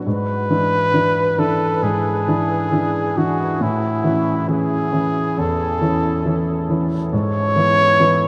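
Drenched in a huge, wet reverb that places the duo in a vast, echoing space, this brief passage from a longer romantic classical piece unfolds at a rubato 68 BPM in 4/4 with a tender, serene mood. A close-miked trumpet carries the melody up front in a solo classical style, its warm tone touched with light vibrato between E4 and C#5. A polished, present grand piano accompanies from E2 to E4 through E7/G#, A at 3.6 seconds and E/G# at 7.1 seconds.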